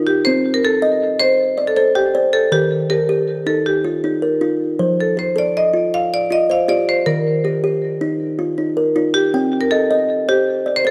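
A moderate recital-hall reverb surrounds this short cut from a longer piece, with both instruments placed up front. It is a hypnotic, rippling piece of southern African traditional music built on an mbira-style interlocking cycle, moving at 106 BPM in dotted quarters in a straight 12/8. The kalimba spins arpeggios across its range from Eb3 to G5, its plucked, woody tone sounding dark and ringing. Alongside it, the marimba struck with hard mallets carries the melody between G4 and F5, bright and percussive, with a tape echo trailing its notes. Both parts play together for the full 10.9 seconds, cycling through Cm, Eb, F, Eb and back to Cm.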